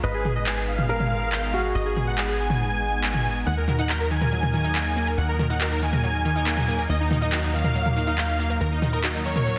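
Driving and euphoric, this short cut from a longer uplifting trance piece runs at 140 BPM in a straight 4/4, sitting in Eb minor with the chords moving from Abm to Ebm at 3.5 seconds. A huge, detuned supersaw carries the melody up front, its thick sawtooth body given a cassette-tape grit, a low-pass filter and digital delay. For the first 3.4 seconds an intimate concert grand piano, with audible action noise, adds a second line through digital delay before the unison pluck takes over with bright, wave-folded, ring-modulated arpeggios from 3.5 seconds. Beneath them a lush unison pad holds slow-attack chords through chorus and phaser, while a punchy, funky analog bass plucks out the low end. A layered electronic big-room drum kit with handclaps and toms, set in a small room ambience, drives the track, and the whole piece sits in a lush hall reverb with a dense, heavily limited modern master.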